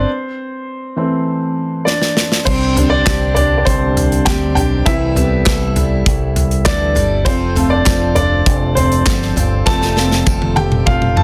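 A straight 4/4 pulse at 100 BPM drives this bittersweet, forward-leaning piano pop excerpt in A minor. A clear, woody upright piano sits up front as the lead voice from the first moment, joined by a punchy fingered electric bass colored by an envelope filter, the two carrying an opening break over an A minor chord. At 1.9 seconds a polished, airy studio drum kit arrives through a fill, bringing a punchy kick, a medium-tuned snare, hi-hat, toms, crash cymbal and handclaps. A picked steel-string acoustic guitar enters at 2.5 seconds with a riff set back in the mix, as the harmony moves through Csus2, Am7/C and F. A jingly tambourine sits in the background from 7.9 to 10.4 seconds, and another drum fill closes out the passage under a dense, heavily limited master with light reverb.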